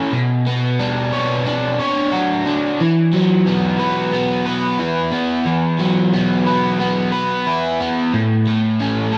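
In a steady, straight four-beat pulse, this short rock fragment, cut from a longer piece, rests entirely on one crunchy overdriven electric guitar playing solo. The picked, double-tracked guitar sits up front, its grit softened by a lush chorus and a tape echo that give it a hazy, wistful cast. It opens on a Bmadd9 chord, shifts to Esus2 at 2.8 seconds as the opening phrase repeats, and lands on A at 8.1 seconds. Across its range, the guitar reaches from low, thick notes up into a bright upper register. A wet studio reverb surrounds the part, leaving the whole fragment dreamy and suspended.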